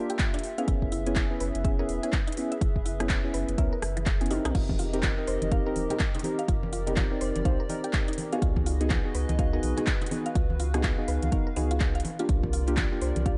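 Deep house at 124 BPM with a swung 16th feel, this deep, hypnotic excerpt rides a punchy, up-front kick and a tape-warm kit of metallic hats, handclaps, rim clicks, toms and crash, with a drum fill at 4.3 seconds and vintage congas and bongos joining in the background at 4.7 seconds. Full-bodied, nasal chord stabs with delay and a hollow, flute-like pad trace suspended ninth chords, opening on a rootless C and moving through Gb, F and Db, while a round sub bass enters at 0.7 seconds and a woody FM mallet pluck spins arpeggios through cassette-tape colour and dub echo. Sidechain pumping breathes through the pad, stabs, pluck, bass and hand percussion, and the dark, dry production keeps the top end rolled off.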